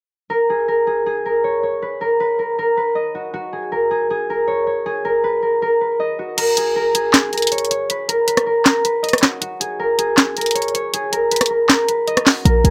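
Brooding, hard-hitting trap hip hop at 158 BPM with a half-time feel, opening at 0.3 s with a mellow, ringing concert harp melody, fingerpicked and softened by a low-pass filter. At 6.4 s an electronic trap kit arrives with a sharp snare, warm hi-hats, handclaps, rim clicks and crash cymbal. At 12.5 s a punchy, tight 808-style sine bass with a noise layer and fast attack briefly hits, all set in light reverb in this excerpt cut from a longer piece.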